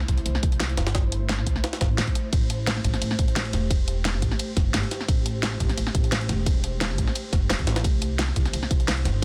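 An ethereal, airy pad opens this liquid drum and bass excerpt in A minor, its detuned sawtooth and triangle layers swelling in slowly through ensemble chorus and built-in reverb, alongside a woody, dark pizzicato upright bass and a pop drum kit with a fat snare, warm hats and ride cymbal. At 0.1 seconds a punchy, layered electronic kick joins, together with a gritty, pitched-up jungle sampler-style kit whose compressed, high-tuned snare and hats are thinned by high-pass filtering and carry a tape-like warmth. The tempo sits at 174 BPM in 4/4 with a light swing on the sixteenths, and the mood is lush and melancholic. The harmony rests on C6, moves to Am7 at 2.3 seconds, and returns to C6 at 7.8 seconds, with the pad's mellow sustained chords and long release and a moving notch in its tone. The steel-strung upright bass sits up front in a dry, dense and heavily limited modern mix, while the pad stays further back beneath the layered drums.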